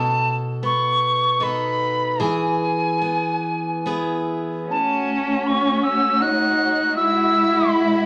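A Celtic slow air in 3/4, unhurried and rubato at around 69-82 BPM in E major, it carries a pastoral, nostalgic mood through a short passage cut from a longer piece. An airy wooden whistle with a chiffy, tongued attack and expressive vibrato sings the melody throughout, first over bright, freshly strung picked steel-string guitar, which gives way at 4.7 seconds to a nasal, boxy solo cello on a second line and a dark, lush bowed string section holding sustained chords. The moderate large-studio reverb lends the whole a gentle spaciousness as the harmony moves from B7 to E, then F#m to Eadd9.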